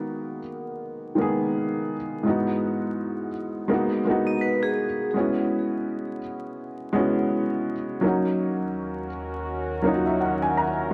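A dark, woody upright piano opens this nostalgic, melancholic hip hop excerpt, sitting up front with audible action noise and a slightly detuned, cassette-softened tone over swung sixteenths and a bed of vinyl crackle, moving through minor ninth and suspended chords. A bright, ringing vibraphone struck with hard mallets adds a brief second line at 4.3 seconds, its slow motor vibrato trailing into tape echo. At 8.5 seconds a warbling, lo-fi pad of detuned sawtooth and triangle tones swells in slowly with chorus and long sustained chords, all set in a moderate plate reverb.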